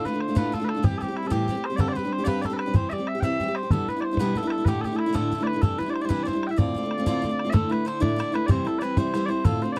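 Wild and spirited, this brief Celtic folk jig in D dorian at 125 BPM in 6/8 sets sweet, mellow small bagpipes with vibrato carrying the melody up front over bright picked steel-string acoustic guitar chords and a damped, tight bodhran that joins at 0.1 seconds, all captured in a dry, close 1970s-style booth sound, with the tune moving into a new section at 7.5 seconds.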